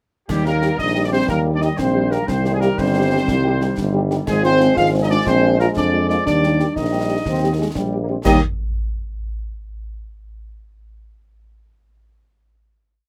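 Festive and rousing, this complete military-style march for wind band moves at 121 BPM in a straight 6/8 in Eb major, with a clear trumpet section carrying the melody from a roomy distance while the euphonium doubles the tune at the octave in the background. A mellow French horn section joins at 0.5 seconds with after-beat and sustained chords, soft-attacked trombones hold sustained chords and answer at phrase ends, and a warm tuba sits up front with bass on the beats. The close, dry concert snare drum rides over a concert bass drum on the beat with dark clash cymbals, and the little-reverberated band moves from Eb through Cm, Fm/Ab and Bb7 before landing on a final chord at 8.3 seconds.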